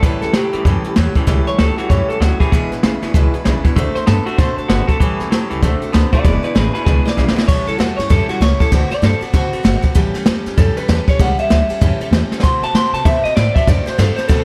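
Set in a small room with light reverb, this rollicking, rowdy rockabilly cut from a longer piece swings at 194 BPM in A mixolydian, with an up-front brushed drum kit of dark cymbals and boomy kick, a woody, thumpy pizzicato upright bass on gut strings, a full-bodied jumbo acoustic guitar playing a picked accompaniment, a lo-fi, compressed electric guitar riff that drops out at 7.5 s, and a twangy, slightly broken-up lead electric guitar through analog delay that carries the bright melody before turning to a solo at 7.5 s, with a drum fill at 12.3 s.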